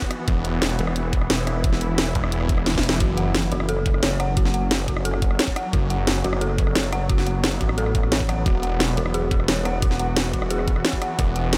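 A light digital ambience surrounds this futuristic, tense excerpt of dark technical drum and bass at 176 BPM in F# minor, where a knocking electronic kick and an up-front kit of cracking snare, hi-hat and rim click drive the groove, with a drum fill at 2.7 s. A snarling, growling distorted saw bass cuts in at 0.3 s and returns in brief bursts, while a pulsing, heavy pluck wobble bass with chorus holds the low end from 0.8 s and a swarming granular drone with sidechain pumping sits in the background. From 3.0 s an eerie, inharmonic FM bell plays arpeggios with chorus and delay as the harmony moves from E5 to F#m and then Eadd9.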